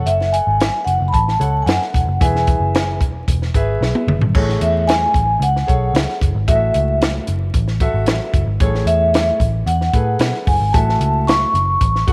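A mellow, ringing vibraphone with soft mallets and a medium motor vibrato carries the melody in this danceable, warm 1960s-style soul excerpt. It sits over a boxy, intimate grand piano with audible action noise and a round, foam-muted picked electric bass up front. A compact cocktail kit adds a punchy kick, high-tuned snare and dark cymbals, and its fill at 3.8 s leads into a new section at 4.3 s, wrapped in small-room ambience, light reverb and vinyl crackle.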